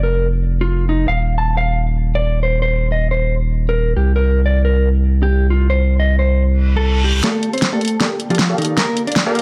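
A dark, clean electric guitar, fingered and compressed with delay, carries a dreamy, emotional melody over a deep, thick sine sub bass with tube saturation, both sitting up front in this dry, half-time future bass excerpt with a swung feel. A reverse cymbal and riser arrive at 6.6 seconds. At 7.2 seconds the harmony settles on Gm9 as a punchy, detuned supersaw stab enters under a filter sweep, joined by a layered electronic pop kit whose fat snare and warm hats play a drum fill that drives the build-up.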